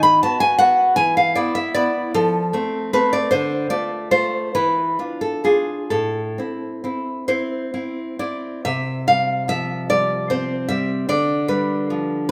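A close, detailed recording places a solo nylon-string guitar up front in a moderate recital hall, its bright, fingerpicked tone carrying finger squeaks and a 1.6-second tail of reverb. This short cut from a longer romantic classical piece moves in a slow, rubato 6/8, with the dotted-quarter pulse drifting between 42 and 54 BPM. The mood is melancholic and wistful, settling in A minor as the harmony passes through B/D#, E5, F, Dm and back to E5 before resting on Am. At 8.6 seconds the music turns toward C major for a second section, sounding C5 and then G7/D. The single guitar spans from A2 up to B5 and plays alone until the cut ends at 12.3 seconds.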